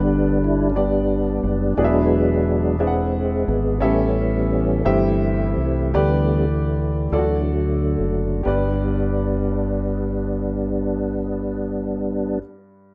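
A rough home demo mix with light reverb frames this short cut from a longer slow gospel piece in 6/8, hopeful and reverent in mood. The tonewheel organ sits up front with a clean, clear tone, slow rotary speaker, chorus vibrato and audible key click, holding sustained chords and taking the featured solo through to 8.5 s. Beneath it, a fingered electric bass gives a dark, round, punchy foundation, while an upright piano adds woody, vintage accompaniment with long sustain. The harmony moves from G through E7 and A7 to C/G, G/D and D, and the music slows down from 3.8 s before settling back on G. Near the end the organ and bass drop away, and the piano rings on alone until 12.9 s.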